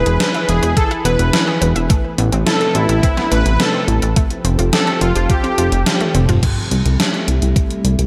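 A glossy, retro chorused synth bass sits up front with tube saturation and sidechain pumping, anchoring this uplifting, dreamy synthwave excerpt at 106 BPM in straight 4/4 and C major. Above it, a smooth, evolving soft supersaw carries the melody through delay, while a round, bright analog pluck spins chorused, delayed arpeggios in the background. A lush, warbling unison pad holds sustained chords with a slow attack, pumping under sidechain as the harmony moves from E to Amadd9 and Fadd9 before settling on C6. The gated 80s drum machine brings crash cymbal, hi-hat, toms and a gated reverb snare, overdriven and up front, and a thumpy, overdriven electronic kick joins at 0.8 seconds. A drum fill at 6.0 seconds leads into the closing C6 passage as the supersaw drops out at 6.1 seconds, all wrapped in light reverb and digital ambience.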